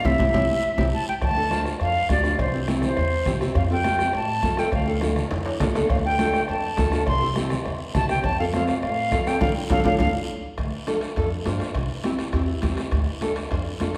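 A drum fill and a band accent open this danceable, passionate cumbia excerpt, with an airy silver concert flute out front carrying the melody with vibrato and a soft attack. Beneath it, a dark, full-bodied nylon-string guitar is fingerpicked in accompaniment and adds short fills, one of them at 3.1 seconds. A woody upright bass is plucked low, and a distant bombo is struck with a soft beater. Damped, high-tuned congas, ringing timbales and cowbell with a vintage, band-limited tone, and a raspy guiro fill out the percussion, the congas and timbales sitting in the background. The flute drops out at 10.1 seconds, leaving the guitar, bass and percussion to carry on, with a final guitar fill at 12.3 seconds. The whole band is set in a wet recital-hall reverb that gives it the resonance of a church or concert hall.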